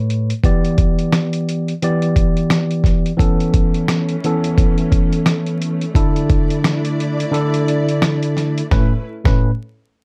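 Confident and soulful, this boom-bap hip-hop excerpt moves at 87 BPM in 4/4 with a swung sixteenth-note feel in A mixolydian. A tine electric piano carries the accompaniment from the start. Its warm, clean tone, heard through built-in speakers and tinted by cassette tape, sits up front beside a dusty, sampler-style drum kit of hi-hat, kick, rim click and snare. The drums are compressed and gritty, with a thumpy kick and fat snare that carry a tape-warm weight, and the kick drops out between 7.3 and 8.7 seconds. A lush, woody string section enters at 3.2 seconds, playing bowed, sustained chords with vibrato from close in the studio, set lower in the mix. The chords move from Em7 through Aadd9/E and Dsus2 before settling on Aadd9, and the dark, warm production adds vinyl crackle over a moderate room ambience.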